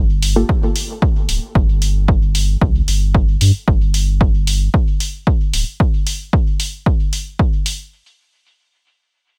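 Deep and nocturnal, this dub techno excerpt rests on a clean, smooth sine sub bass with sidechain pumping that drops out at 5.6 seconds, beneath a punchy, overdriven electronic kick and an overdriven electronic hi-hat, both up front, while a muted, nasal, detuned sawtooth chord stab with phaser, pumping and dub echo flickers at 0.4 seconds under a filter sweep, all set in a digital ambience.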